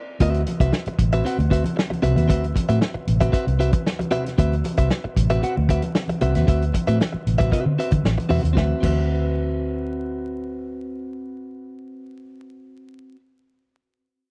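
A dry, close 1970s-style studio sound with vinyl crackle frames this energetic, playful funk cut at 115 BPM in D mixolydian, opening on a band accent and a D13 chord, where a clean, scooped, direct-recorded electric guitar with spring reverb plays accompaniment up front over a dark, round, foam-muted fingered bass, a mid-forward soul drum kit with a tight kick and a rolled-off top, and very quiet, distant soft-handed congas, until the drums and congas stop at 9.0 seconds and guitar and bass carry on alone.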